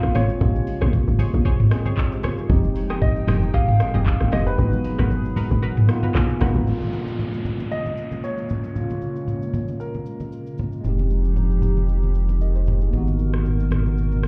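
Amapiano at 115 BPM in Bb dorian with a deep, late-night mood, this excerpt cut from a longer piece opens on a drop where a tight, punchy log drum bass and a knocking electronic drum kit with metallic hats sit up front, joined by a natural grand piano melody with delay, a clean tine electric piano, a hollow, flute-like pad in the background, warm, bright plucks and damped, low-tuned congas, until the kick mutes at 4.6 s, the electric piano plays a fill, a downlifter sweeps in at 6.7 s, and a round sine sub bass takes over the low end at 10.8 s, all heard muffled as if through a club wall.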